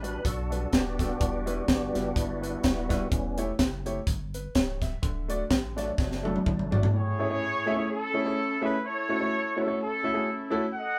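Uptempo gospel at 126 BPM in 4/4 with a light swing on the eighths, this jubilant, uplifting cut from a longer piece opens with a reedy, bright tonewheel organ taking a solo over sustained chords, colored by a slow rotary speaker, chorus vibrato and audible key click. Beneath it, a worn concert grand piano with deep bass accompanies up front, a round sine sub bass holds the low end, and a crisp fusion drum kit plays hi-hat, kick, snare and toms with a punchy kick, a high-tuned snare and a gritty, saturated, pumping room sound. A drum fill from 6.0 to 6.9 s leads into the second half, where the music settles into A major and the organ, bass and drums drop out. From 6.9 s a horn section carries the melody as a smooth-topped ensemble with light vibrato, supported by the piano until it stops at 10.6 s. The band sounds as if playing live together in one room, with moderate studio reverb.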